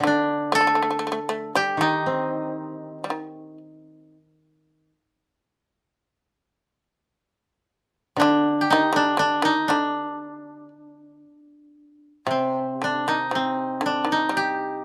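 Austere and calm, this rubato fragment of Japanese traditional chamber music sets an up-front, woody koto melody played with fingerpicks over a bright, buzzing, plectrum-plucked fretless shamisen second line and a mellow lower koto accompaniment, the three parts falling silent between 3.6 and 4.9 seconds and returning together at 8.2 seconds, all heard in light reverb with some lossy compression artefacts.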